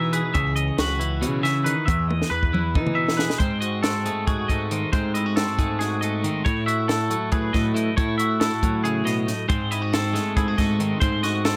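A straight 7/8 pulse at 275 BPM in eighths drives this intricate, wistful math rock and midwest emo excerpt. A warm, compressed twelve-string electric guitar carries the chords, from C#m11 and Emaj7 to G#7b9 and F#m9/A, while a twangy, clean guitar picks high arpeggios through a slapback echo above a growling, overdriven picked bass. A dry, compact cocktail drum kit with a high-tuned snare and punchy kick sits up front in a close, nearly reverb-free sound, and plays a fill from 2.1 to 3.4 seconds that leads into the second section.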